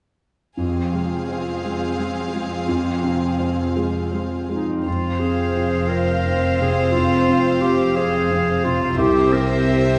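A resonant, reverberant hall sound with softened highs frames this short, bittersweet cinematic passage in F minor, moving slowly at 58 BPM in a rubato 6/8 and carrying a longing mood. A dark, mellow piano with audible action noise plays accompaniment alongside soft-edged, sul tasto string sections: a close violin section with light vibrato carrying a second line, plus floating violas and distant cellos in the background, while a ringing, fingerpicked harp plays arpeggios. A distant, roomy clarinet joins at 4.5 seconds and a double bass section enters at 4.9 seconds, the harmony resting on F minor before turning to C at 9.0 seconds.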